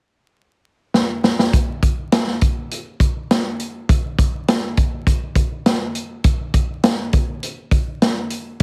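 Vinyl crackle opens this joyful, danceable soul excerpt before a vintage acoustic drum kit enters at 0.9 seconds with a fill and then settles into a straight 4/4 groove at 102 BPM, its punchy kick, medium-tuned snare and hi-hat sitting up front with a rolled-off top in a natural studio room, all heard through light reverb and a heavily compressed, radio-like sound.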